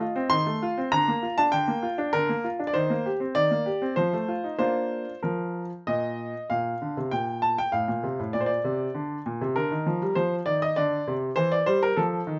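A clear baby grand piano carries this playful, graceful passage alone, sitting up front with an intimate presence and audible action noise beneath the notes. The music is a classical-period sonatina in Bb major, moving at 98 BPM in a straight 3/4 that gives it a poised, dance-like lilt. The piano ranges from A2 up to C6, and its tone comes across as natural, framed by light reverb. The harmony opens on F7 before settling toward Bb, passes through Cm7/Eb, and returns home, with a later turn to Em7b5 near 11.4 seconds adding a touch of tension. Cut from a longer piece, the 12.4-second recording presents its opening phrase and then restates it from 6.5 seconds.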